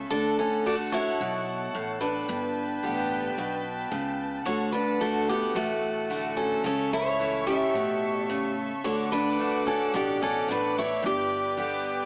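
Honky-tonk and classic country with a down-home, nostalgic mood, heard in a short cut from a longer piece in a straight four-beat feel. A picked steel-string acoustic guitar carries the melody, its bright, full-bodied dreadnought tone ringing clearly. Alongside it, a second picked acoustic guitar plays accompaniment up front, its bright, full-bodied dreadnought tone catching fresh-string sparkle and the odd finger squeak. A chamber violin section holds sustained chords with a soft attack, light vibrato and an intimate, sul tasto hush. An upright bass, plucked and woody, anchors the low end throughout. The harmony moves from D to G and back, passes through A over C#, and returns to D before settling on G. The whole track sits in a moderate studio ambience and comes through worn, warbling cassette tape with pitch drift and a small-speaker sound, lending it a faded, keepsake quality.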